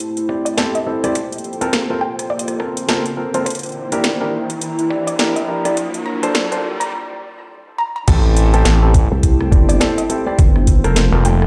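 Glitch hop with a swaggering, gritty swing, cut from a longer piece, builds for its first 8.1 seconds over a thumpy, pitched-down electronic kick, a drum kit with a cracking snare and metallic hats, worn, dark grand piano stabs with 12-bit grit and tape echo, a woody wave-folded pluck melody under a filter sweep, and background pads, one smooth analog and one warbling, nostalgic and lo-fi, with an electronic riser running from 0.9 to 6.9 seconds before a short break. At 8.1 seconds the drop lands with a saturated, aggressive synth bass up front, joined at 9.1 seconds by a nasal vowel-sweep wobble bass, while sidechain pumping breathes through the piano and pads. The mix sits in a large, reverberant room with light digital ambience.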